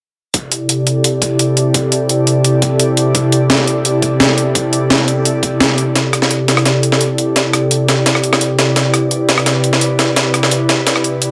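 This liquid drum and bass piece moves at 171 BPM in a straight 4/4, set in C major and tuned slightly low to A4 = 439 Hz, with a warm, uplifting mood. An airy, breathy pad sits up front, holding sustained C6 chords from C3 to D5, its detuned sawtooth and triangle layers blended with a noise layer, ring modulation and chorus, all shaped by a slow attack and long release. Beneath it, a compressed, gritty breakbeat kit of hi-hat, rim click and a high-tuned snare drives forward, with high-pass filtering thinning the hats and snare. A thumpy electronic kick supports the groove until 5.5 s and then drops away. Filter sweeps on the pad run through both sections, and from 6.0 s a build-up takes hold, with a drum fill carrying the passage onward, all wrapped in light reverb and digital ambience.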